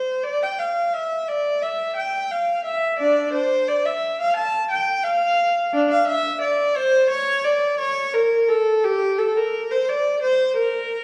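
A wet recital-hall reverb, heard from further back in the room, surrounds this short fragment cut from a longer baroque-style suite movement for unaccompanied viola. A single bowed viola plays alone from start to finish, its tone rich and focused with vibrato, sitting up front yet carrying a distant quality as it moves between D4 and A5 in a free, rubato 4/4, tuned slightly below standard pitch. The mood is introspective and grave.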